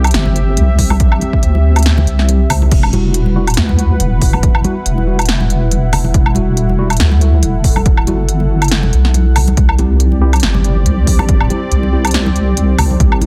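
Deep dubstep at 140 BPM in E minor with a half-time, lightly swung 16th feel, this cavernous, meditative excerpt sits on a dark, full-bodied analog pad with chorus and a deep, wobbling sine-and-triangle bass held up front, moving from C to Emadd9 at 2.7 seconds and back to C at 9.6 seconds. A punchy, layered electronic kick enters at 0.8 seconds, joining a produced kit of snare, smooth hi-hats, crash cymbal and woodblock that plays from the start, while soft-handed, bright congas with dub echo sit in the background. From 2.9 seconds, mellow tine electric piano stabs, clean and echoed, drift behind the mix, all framed by light reverb and a dense, heavily limited modern master.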